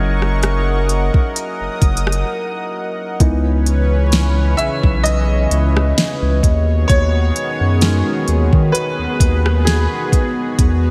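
A slow 65 BPM groove in 4/4 with a light sixteenth-note swing drives this moody, longing contemporary R&B excerpt, built on a soft-kicked, fat-snared electronic kit with smooth hats and rim clicks sitting up front beside a deep, saturated sub bass. A shimmering, retro pulse-width pad with chorus and sidechain pumping holds mellow sustained chords over F#7, C#m7 and B6/D#, while a clear, slightly worn baby grand piano accompanies before taking a solo from 3.2 seconds after a brief break at 2.3 seconds. The whole mix is soaked in a lush hall reverb that gives it a dreamy quality.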